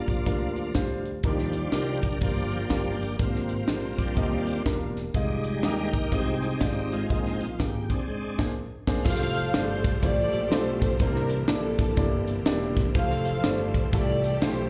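A shouting, bright tonewheel organ solos through a slow rotary speaker over an intimate grand piano with slapback echo, a round, punchy fingered bass and a crisp fusion kit with a high-tuned snare, opening this uplifting, soulful uptempo gospel swing excerpt heard live through a club PA, and after a band accent at 8.1 s a smooth, bowed string section takes the melody from 9.1 s.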